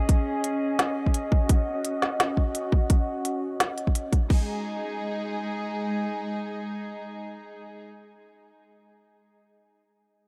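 An up-front trap drum kit with a hard-clipped, overdriven kick and crash cymbal drives this tense, dark half-time drum and bass excerpt at 171 BPM, joined by an organic electronic kit with a woody snare and smooth hats that sound re-recorded in a small room. A rich, biting string section holds bowed chords with light vibrato and an earthy studio tone, pumping under sidechain compression while a filter sweeps across it until 4.3 s. Both kits drop out by 4.4 s, leaving the strings alone in light reverb as the harmony moves from C#5 to G#5 before the cut at 7.9 s.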